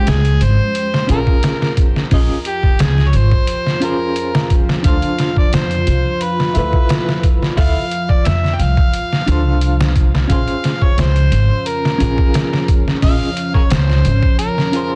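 Cinematic and smoky, this trip hop excerpt sets an overdriven, amplified harmonica melody with dub echo over a dark, clean semi-hollow electric guitar that carries tremolo and tape echo, while a deep, detuned analog pad with chorus enters at 0.6 seconds to hold slow-attack chords. Up front, a woody pizzicato upright bass with tube saturation sits alongside a pitched-down, gritty sampler-style drum kit with a thumpy kick, a medium-tuned snare, hi-hat and small room ambience. The harmony moves from Bbm7 to Dm9 and back, and the whole has a dense, heavily limited modern master.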